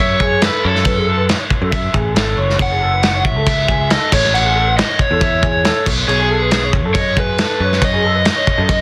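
In a straight 4/4, this wistful, intricate math rock and midwest emo clip moves through F#m11, A6 and B13 chords, with a raw, overdriven garage guitar carrying the melody through slapback echo and plate reverb over twangy, slightly broken-up arpeggios from an electric guitar through a small old amp, bathed in lush chorus. A growly, overdriven picked electric bass holds the low end. A loose indie drum kit joins at 0.2 seconds, its muffled, lo-fi sound sitting up front with dark cymbals, a gritty, soft-clipped tight kick and a medium-tuned snare, all within a dense, heavily limited modern master.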